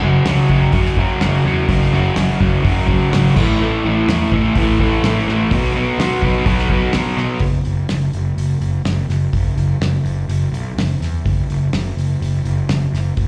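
A straight 4/4 pulse at 126 BPM drives this rowdy, swaggering garage rock excerpt, captured live through a club PA with only a touch of room reverb. A raw, overdriven, double-tracked electric guitar riff sits up front, moving through F#5, A5 and B5 power chords until it drops out at 7.4 seconds. The fuzzy, round picked bass and a cloth-damped, thuddy drum kit, with a fat snare, tight kick and dark cymbals, carry on to the close at 13.3 seconds.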